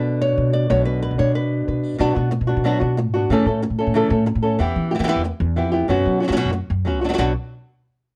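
An up-front, fingerpicked flamenco guitar with audible finger squeak carries the melody from the first moment over a dark, woody pizzicato upright bass in this mournful yet fiery flamenco excerpt at 185 BPM in B minor, moving from Bm through A, Em and F#sus4 to a closing B5 at 7.2 seconds, all in a dry room and colored by the warbly pitch drift of worn old cassette tape.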